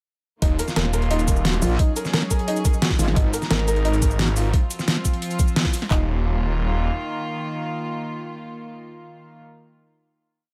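This is a short, aggressive and futuristic piece of dark technical drum and bass in Eb minor at 175 BPM, opening straight into a drop at 0.4 s. A layered, overdriven dubstep drum kit sits up front, pairing a knocking kick and handclaps in a broken-beat pattern with a deep snare, bright hi-hats and cabasa in tight, technical figures, all bathed in studio reverb. Underneath, a snarling distorted saw bass growls through chopped phrases in a detuned, resonant unison, while a gut-toned, reedy string section holds sustained chords and a soft felt-muted upright piano repeats an eight-step arpeggio, its audible action noise echoing through a delay; both of these pump against the beat. From 1.6 s to 3.1 s a metallic, chorused wobble bass joins with modulated phrases whose wobble speed changes, answering the saw bass. The harmony moves through Eb, Gb, Ab and F. After a band accent at 5.6 s the drums drop away, and the strings ring out a final chord from 5.9 s inside a digital ambience, while the piano and saw bass stop shortly after.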